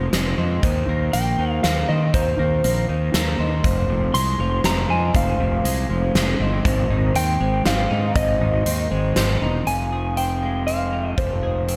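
Post-rock in a melancholic, cathartic 3/4, cut from a longer piece, where a slightly broken-up electric slide guitar carries the melody through diffuse ambient delay over chorused arpeggios from a clean twelve-string electric guitar and mellow, ringing soft-mallet vibraphone in the background, while a growly fuzz fingered electric bass and a punchy, up-front big rock drum kit entering at 0.1 s anchor a dreamy, reverb-soaked mix with a faint mains hum.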